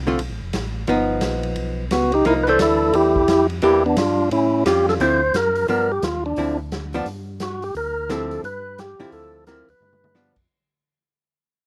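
A bluesy, swinging soul jazz organ trio opens on a tonewheel organ bass line, full and lightly overdriven with chorus vibrato, key click and a slow rotary speaker. It is joined almost at once by an up-front archtop guitar comping, dark, clean and compressed, and by a smooth big-band drum kit with a punchy kick, medium-tuned snare and rolled-off top. At 1.9 seconds a clear, percussive tonewheel organ takes the melody up front with third-harmonic percussion, slow rotary swirl and a touch of grit, while the rough home-demo mix sits in a small room and fades out from 5.0 seconds, capped by a short drum fill at 9.8 seconds.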